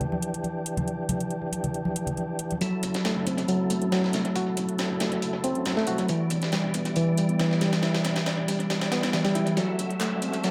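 A barky, lightly overdriven reed electric piano sits up front with a filtered riff over a percussive tonewheel organ's sustained Em7 and F#m7b5 chords, pumping with chorus vibrato, while metallic garage hats and claps run throughout and warm congas give way at 2.6 seconds to a gritty, thumpy sampler-style kit, joined moments later by a background fingered bass, before a closing drum fill and riser, all of it steeped in spring reverb and tape echo in this energetic, raw breakbeat excerpt.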